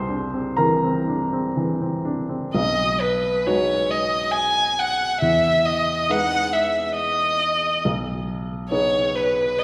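A baby grand piano opens this short excerpt alone, its warm, natural tone and short sustain giving the accompaniment an up-front presence. The dreamy, luminous mood belongs to an impressionist duo in the classical tradition, moving in a gentle triple metre with a free, rubato feel. At 2.5 seconds a single bowed violin enters with the melody, singing in a smooth, even voice coloured by vibrato and sitting slightly above the piano in level. The harmony drifts through lush extended chords, settling on a softly shaded major-seventh sonority before returning home. A generous, wet reverb from a church or concert hall setting wraps both instruments in a warm glow as the passage continues to its close at 9.6 seconds.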